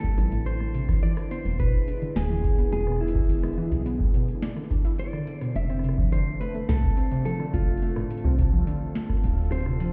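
A straight 4/4 groove at 106 BPM drives this glitchy, intricate IDM passage, with a deep, tape-warm electronic kick up front, joined at 0.2 s by a booming analog drum machine adding crisp snare, rim clicks and metallic hats through delay and by a woody, round FM bass with tube saturation. A warbly, dusty pluck spins lo-fi arpeggios with a noise layer and filter sweep, while a detuned sawtooth pad with vintage 12-bit sampler grit sustains chords moving from C69 to E7 to F6, and a clean, compressed electric guitar picks a dark melody through spring reverb and delay. The mix sounds muffled, as if heard through a wall into a stone room.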